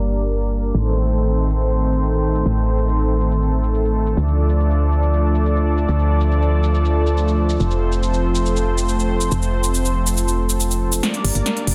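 A lush, detuned unison pad with chorus sits up front in this driving, bittersweet uplifting trance passage at 140 BPM in G minor, holding sustained chords through a Gm, Adim, Dm and F progression. Beneath it, a round, punchy FM bass with a fast attack and a layered, overdriven big-room electronic drum kit with crisp hats, shaker and a punchy snare carry the straight 4/4 pulse, set in light reverb under a dense, heavily limited master. A filter sweep runs through the first 11.0 seconds before a drum fill closes the cut at 11.7 seconds.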